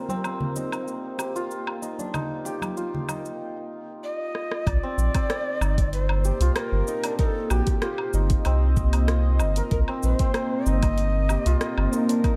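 A straight 4/4 pulse at 95 BPM drives this hypnotic organic downtempo piece in C minor, with a produced afro-pop kit of cabasa, warm hi-hat, rim click and woodblock joined in the opening by bright, roomy congas and bongos. A detuned, chorused analog pad holds a Cm7 chord with sidechain pumping, while a shimmering hammered santur rings out delayed arpeggios, both under filter sweeps, and an airy, wind-like tuned noise layer breathes in the background until a break at 3.4 seconds. A mellow, chiffy cedar flute with vibrato and delay takes the melody from 4.0 seconds, and after a drum fill a deep electronic kick and an up-front, round analog bass arrive at 4.7 seconds, all within a dark, lightly reverberant mix.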